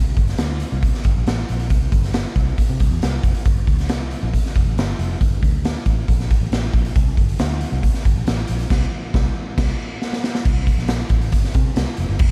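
Uptempo 1960s-style soul at 137 BPM in a straight 4/4, this danceable, warm cut from a longer piece opens with a dark, round, foam-muted fingered electric bass through an amp, joined at 0.2 s by a raw garage drum kit with a punchy kick, a medium-tuned snare, hi-hat and crash. The drums sit up front, saturated and gritty in a bright, pumping stone room, while the recording carries little reverb and a layer of vinyl crackle. The band hits accents from 8.7 s, a drum fill arrives at 10.0 s, and a new section begins at 10.5 s.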